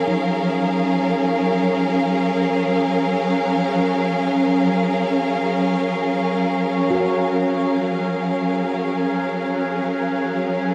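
A lush, bowed string section sits up front, holding a sustained F#maj7 chord with soft attacks, vibrato and expressive portamento from the opening moment to 10.7 seconds. This short ambient fragment, cut from a longer piece in free time and F# major, feels luminous and weightless. Beneath the strings, a handpan with a ringing, stainless-steel tone played with the fingertips traces meditative arpeggios in the background, its notes trailed by delay. From 1.3 seconds a resonant drone with moving overtones rises slowly out of sawtooth and sine tones, coloured by chorus, phaser and its own reverb, and hangs in the background with a long release. The whole recording sits in a vast, echoing space, its huge ambient reverb giving the sound a drifting, suspended quality.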